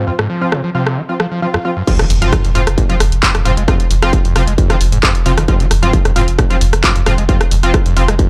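Dry, this intense, industrial stretch of driving peak-time techno opens with a squelchy, resonant sawtooth acid riff, edgy, nasal sync-sweep polysynth stabs and a very quiet, moody ambient pad, as a techno drum kit of crash, handclaps, warm hi-hats and rim clicks joins and a faint electronic swell leads into the drop at 1.9 seconds, where a distorted, up-front kick and an impact arrive beneath the pumping synths, followed moments later by a thick, saturated sub bass.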